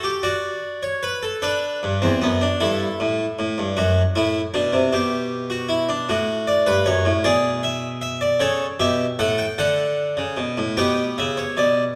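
A straight 6/8 at 51 dotted-quarter beats per minute sets a stately, elegant pace for this short passage cut from a baroque-style four-part fugue in G major. A solo harpsichord, plucked and airy in the Flemish manner with two sets of strings, sounds full and up front across a range from E2 to G5, moving through chords such as D/F#, A7 and D before reaching C#m7b5/B at 10.8 seconds. A wet recital hall reverb with a 1.6-second decay surrounds the instrument.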